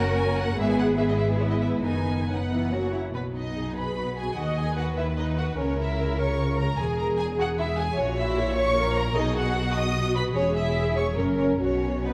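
Up-front double basses with a focused, smooth-topped tone anchor this cheerful, graceful classical-period movement for string orchestra in 3/4, played with a rubato feel and cut from a longer piece. Distant violins carry the melody over a second, expressive violin line, while close, even violas supply accompaniment and cellos add portamento to the bass, every section bowed with vibrato throughout the 12.1 seconds. A wet scoring-stage reverb surrounds the ensemble as the music moves from its brief opening phrase into a longer second passage at 3.2 seconds.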